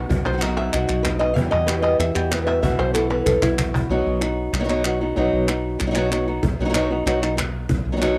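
Flamenco of a mournful, intense cast, cut from a longer piece, where a bright, up-front fingerpicked guitar carries the melody over a warm, background guitar playing stabs until 3.9 seconds, both guitars colored by cassette tape. A dark, round, punchy fretless electric bass sits up front, while crisp palmas hand claps enter at 0.3 seconds and run to the end, and a distant, woody cajon with faint snares plays a fill before dropping out, returning at 6.4 seconds. The home cassette recording is bathed in moderate spring reverb and studio ambience.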